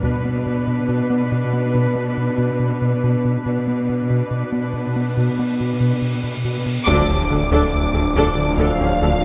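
A tense, vast hybrid orchestral and electronic film score cue at 70 BPM in straight 4/4, this passage opens on B minor with a build-up. A round, deep analog bass riff sits under a close, lush cello section and a smooth viola accompaniment, while very quiet taiko hits with heavy sticks sound until 1.7 seconds. A huge, bright cymbal swell rises from 5.1 seconds into an impact at 6.9 seconds, where the harmony shifts to D minor and the full band lands an accent. Here a focused, vibrato-rich violin melody sings high with a distant second violin line behind it. Dark trombones and French horns hold sustained chords in the background, and a thick, beating, menacing detuned saw bass anchors the low end alongside a very quiet double bass section and tuba. The taiko returns, and moderate concert hall reverb gives the ensemble a spacious sheen.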